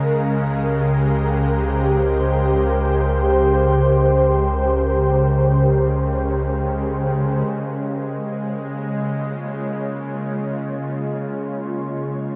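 Luminous and peaceful, this ambient passage drifts in free time in Db lydian, cut from a longer piece and bathed in a huge reverb with an 8.8-second tail. An up-front glassy FM pad holds ethereal, chorused chords from Db3 to F5, moving from Abmaj7/Db to Db6 at 7.5 seconds, over a string-like drone whose bright, tense sawtooth tone carries vibrato and a noise layer. A deep, round sub bass sustains a low Db until 7.4 seconds, leaving the pad and drone to hang together through the close at 12.4 seconds.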